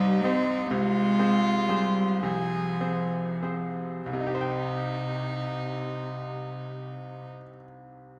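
Elegiac and solemn, this excerpt from a slow romantic movement for piano trio sits in C minor and unfolds in a rubato 6/8, with dotted quarters at roughly 30-45 BPM, slowing down through its first 4.1 seconds. A single violin carries the melody in a pure, floating, sul tasto tone with a soft attack and a smooth top, while one cellist plays a second line that is dark and intimate, close and up front, its airy sul tasto bow touched with light vibrato. The bright grand piano supplies the accompaniment with a brilliant, present sound and long sustain, its action noise audible, and it rings on after the strings stop at 7.3 seconds until 8.2 seconds. The harmony moves from C minor to F minor over a C bass and returns to C minor as the second section begins at 4.1 seconds. A wet scoring stage reverb of about 1.8 seconds wraps the trio, with the tuning set slightly low at A4 = 436 Hz.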